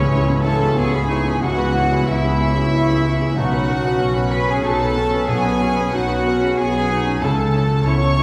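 A sorrowful, bittersweet cinematic passage, cut from a longer orchestral score, opens at once in C# minor at a rubato 93 BPM in 3/4. A floating violin melody sits over a second line shared by an airy wooden flute and a further violin section, and a dark clarinet joins at 0.1 seconds. Beneath them, a felt-muted upright piano, ringing harp arpeggios, distant French horns holding sustained chords and a very quiet, woody viola section fill out the accompaniment, while a rich cello section and soft-attack double basses, all bowed sul tasto with the upper strings, carry the bass through C#m7, Bsus2 and A/C#, heard from further back in a wet scoring-stage reverb.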